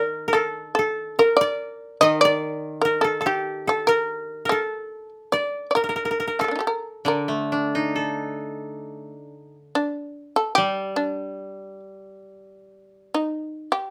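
Japanese chamber music in D miyako bushi, austere and calm, moving at a rubato 72 BPM, with a bright, buzzing, plectrum-plucked shamisen carrying the melody up front while one woody, fingerpicked koto plays a second line until 8.7 s and another koto supplies a lower accompaniment until 13.1 s, all in a moderate studio reverb in this fragment of a longer piece.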